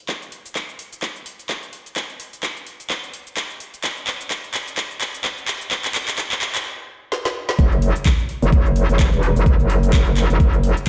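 Swaggering and gritty, this bass house cut runs at 128 BPM in 4/4 with a swung sixteenth feel, opening on a build-up where an overdriven, knocking electronic kick and an up-front garage kit of woody snare, metallic hats, cabasa and handclaps roll through drum fills before a brief stop at 6.7 seconds. At 7.6 seconds the drop lands as a metallic, aggressive FM wobble bass enters between E1 and F#1, bright and saturated with chorus and sidechain pumping. A large studio reverb gives the whole piece the feel of a big sound system in a bare room.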